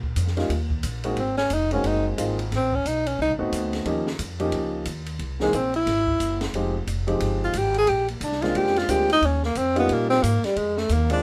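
A brisk swing pulse at 179 BPM in 4/4 drives this short cut from a longer small-group jazz piece in the swing and bop vein, set in Eb mixolydian with a warm, playful mood. Upright bass and an open acoustic drum kit start together at 0.0 seconds: the pizzicato bass is woody and thumpy with the dark sound of gut strings, while the drums bring dark cymbals on the ride and hi-hat, a high-tuned snare and a boomy kick in a natural studio room. A grand piano with short sustain joins the accompaniment almost at once, sitting up front in the mix. The tenor saxophone carries the melody from 1.2 seconds, pauses, then returns at 5.4 seconds, close-miked and soloing with vibrato, a soft attack and scooped notes. The harmony moves through chords such as Ab9, Adim7, C7b13 and Fm7 before settling between Eb9 and Bb9, all under a light reverb.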